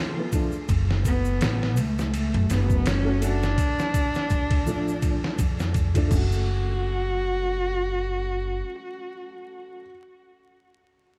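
Swung sixteenths at 83 BPM drive this smoky, melancholic trip hop excerpt in F# harmonic minor, where a gritty, pitched-down sampler drum kit with a thumpy kick plays until 6.3 seconds alongside a faint, bright egg shaker, over a woody pizzicato upright bass, while a dark bowed cello with vibrato carries the melody through 12-bit sampler grit and tape echo above soft, boxy felt-muted upright piano with tremolo, and a breathy wind-like tuned noise texture drifts until 6.5 seconds amid studio reverb and vinyl crackle.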